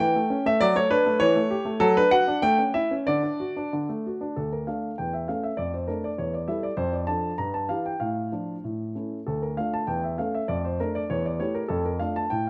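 Moving in 2/4 at 98 BPM with a rubato feel, this classical-period piano sonatina has a playful, graceful mood and is taken from a longer piece. A baby grand piano plays alone throughout its 12.5 seconds, with a warm, polished tone that sits present and up front across a range from D2 to Bb5. The opening phrase in D major rocks between A7 and D chords. At 4.4 s the music turns to D minor, and the same phrase returns darker, passing through a rich Gm13 before settling back on Dm and A. Close, detailed microphones and a light reverb give the instrument an intimate, finely etched sound.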